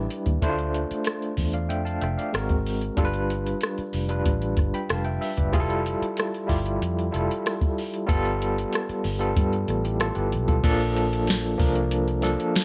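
Dry, this short cut from a longer, lush 1970s-style soul piece moves at 94 BPM in a smooth, romantic mood, with a gritty, barky tine electric piano up front through a combo amp with medium tremolo, a round, dark, foam-muted fingered electric bass beneath it, and a soft, overdriven analog rhythm box with a deep kick, crisp snare and metallic hats, as the chords move from Dm7 to a Bbmaj7 at 10.6 seconds.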